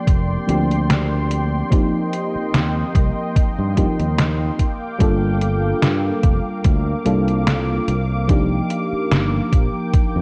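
A thumpy, overdriven electronic kick sits up front in this nostalgic, faded vaporwave fragment at 73 BPM with a light 16th-note swing, joined by a detuned 8-bit drum machine's overdriven hi-hat and snare, a bright, growly fingered electric bass, a round, warbling FM electric piano bathed in chorus and analog delay, and a thick, detuned sawtooth pad sustaining chords from Bb69 through Eb6 and Gm7 to Cm11, under light reverb and a cassette-tape haze.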